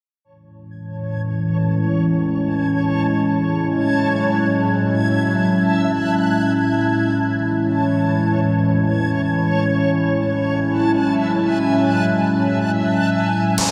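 In free time, this floating, dreamy stretch of atmospheric cloud-rap in A major drifts on a deep, detuned analog pad holding sustained Amaj7 and F#m9 chords from 0.7 seconds, colored by chorus, phaser and a filter sweep, while a reversed, granular high texture shimmers above from 1.0 seconds, all bathed in a huge ambient reverb until a trap crash and metallic hi-hat with an up-front downlifter arrive at 13.6 seconds as the cut-off fragment ends.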